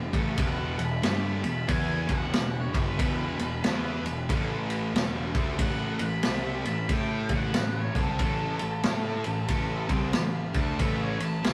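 A swung 4/4 groove drives this gritty, swaggering blues rock and southern rock cut from a longer piece, with a vintage drum kit up front laying down punchy kick, medium-tuned snare and dark ride cymbal. A sludgy, double-tracked guitar riff with overdrive and a growly, bright fuzz bass churn through A5 and E5 chords. From 0.4 s, an octave-fuzz lead guitar with a dark, distorted edge solos high above them, all captured in a rough rehearsal-room recording with light reverb.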